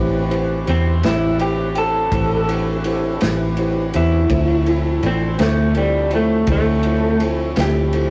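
A brooding, mournful slow blues in 12/8 at 55 BPM opens with a tine electric piano, clean through its built-in speakers, comping in A minor beside a fat tonewheel organ that holds sustained chords in the background, its tone lightly overdriven with chorus vibrato, key click and a slow rotary speaker. A dark, foam-muted electric bass, round and punchy, sits up front from the start, and the crunchy breakbeat kit joins at 0.3 seconds with a punchy kick, medium-tuned snare and dark ride cymbal, its sound gritty and saturated with a rolled-off top. At 0.7 seconds the electric guitar takes the melody through a small old amp, slightly broken-up, compressed and lo-fi, bathed in spring reverb and placed up front as a solo. The harmony moves from Am7 to Dm7 at 4.3 seconds, while the straight feel stays unhurried. The whole fragment, cut from a longer piece, has the rough character of a rehearsal-room recording, with moderate stone-room reverb and a warm saturated glow.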